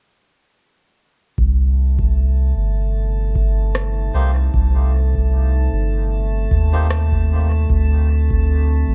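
A soft, round dub sub bass sits up front with an overdriven analog kick from 1.4 seconds, soon joined by a drifting glassy texture and a warbling, lo-fi, detuned pad that fades in behind them, while a tape-warm rim click and a reedy, breathy melodica trail dub echoes through the echo-heavy mix of this meditative, hazy ambient dub fragment, which moves from Cm to D7(no3) at 7.7 seconds.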